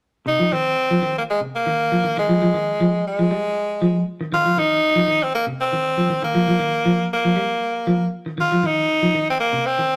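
A straight 4/4 pulse at 118 BPM drives this intense afrobeat excerpt, where a gritty, forceful tenor saxophone carries a punchy pop-style melody with vibrato up front while a clean, picked semi-hollow electric guitar plays arpeggios through a harmonic tremolo, both playing from 0.3 to 10.0 seconds in a stone room with a moderate reverb in a rough rehearsal-room recording.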